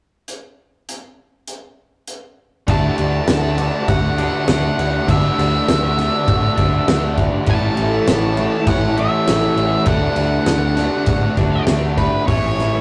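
Dreamy and wistful, this shoegaze and dream pop rock passage, cut from a longer piece, opens with a loose indie drum kit playing alone from 0.3 seconds, its punchy kick, fat snare, hi-hat and dark crash cymbals sitting up front in a pumping room sound. At 2.7 seconds the full band arrives over a Dadd9 chord: a round, hollow-body short-scale electric bass played with the fingers anchors the low end, while a dark, distorted octave-fuzz lead guitar carries the melody. Behind them, a thick fuzz guitar and two crunchy overdriven guitars, one of them bright and double-tracked, stack up riffs in the background. A smooth, detuned analog pad with a sub octave, slow attack and chorus holds sustained chords, and a very quiet, twangy, compressed clean guitar adds fingered arpeggios. The harmony moves between Dadd9 and A, and the whole take carries the rough, tube-saturated character of a rehearsal-room recording in a moderate booth ambience.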